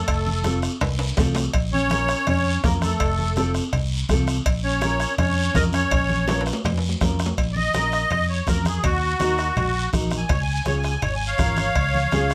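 Lightly reverberant, this danceable, fiery cumbia fragment puts a reedy, shimmering musette accordion up front on the melody, shadowed by a breathy, close-miked clarinet with vibrato and scooped notes that drops out at 6.4 s before the accordion takes a solo from 7.4 s, all over a round, dark fingered electric bass, a thumb-plucked classical nylon-string guitar, a dry soft-beater bombo, bright low-tuned congas in the background, ringing cowbell and timbales, a raspy, distant guiro, and a couple of drum fills.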